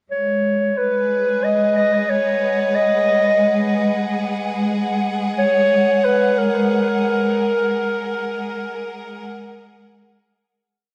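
Deep and meditative, this short ambient piece in G# minor at 91 BPM sets a dark, distant solo clarinet melody with dub echo over the lush, vibrato-rich sustained chords of a clear symphonic string section, moving from G#m7 to F#/G# in a roomy spring-reverb space before fading out from 7.1 seconds.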